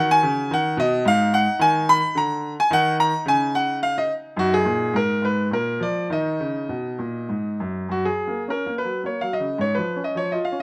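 A bright concert grand piano opens alone, playing a classical, baroque-style suite movement in triple metre with a flexible, rubato feel. The mood is introspective and solemn, and this short passage is cut from a longer piece. The instrument sounds brilliant and open, with a deep bass that anchors its range from Gb2 up to Cb6. The harmony moves through a minor-key progression with brief unharmonised moments, and an opening idea returns at 7.9 seconds before the passage closes at 10.6 seconds. Close, detailed microphones place the piano up front, and a light reverb lends it a touch of space.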